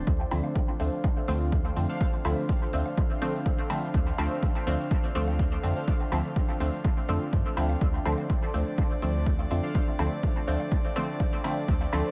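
A deep, hazy dub techno excerpt in D minor at 124 BPM opens on a sustained Dm7 chord: a breathy, slow-attack pad with chorus floats above muted, detuned chord stabs carrying chorus, phaser and dub echo, and a soft, round sub bass, all three pumping from sidechain. A punchy, up-front electronic kick with small-room ambience anchors the straight 4/4 pulse alongside dry, overdriven metallic hi-hats and a very quiet cowbell and woodblock, while vinyl crackle and light digital reverb add a dusty haze. Brief touches of warbling, lo-fi synth keys with chorus, phaser and dub echo surface in the background at 1.9, 5.8 and 9.6 seconds.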